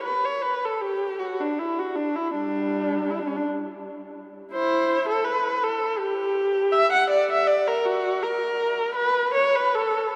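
A single bowed viola, warm and up front with a smooth top, carries this mournful, meditative classical fragment alone from 0.0 to 10.2 s, its line ranging from G3 to F#5 with expressive vibrato and portamento. The playing unfolds in B minor in a free, rubato 6/8 around 54 BPM in dotted quarters, tuned to A4 = 443 Hz. A wet cathedral reverb with a 4.9 s decay surrounds the instrument, as heard in a church or concert hall, and the passage is cut from a longer piece.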